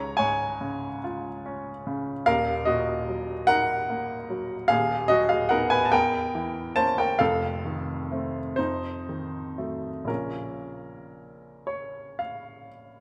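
The music moves in a slow, rubato 6/8, with the dotted-quarter pulse hovering between 37 and 50 BPM, giving this romantic nocturne a yearning, mournful sway. A solo upright piano plays for the whole 13.0 seconds, reaching from a deep Eb1 up to Bb5, in Bb minor and tuned to A4 = 441 Hz. Its tone is woody and intimate, with short sustain, audible action noise, and a close, up-front presence. The harmony passes from Db through Ebm, B/D#, Edim7, F7 and F7b9 before settling on Bbm at 10.1 seconds. A moderate concert-hall reverb of about 2.2 seconds surrounds the instrument in a natural space, and the passage is cut from a longer piece.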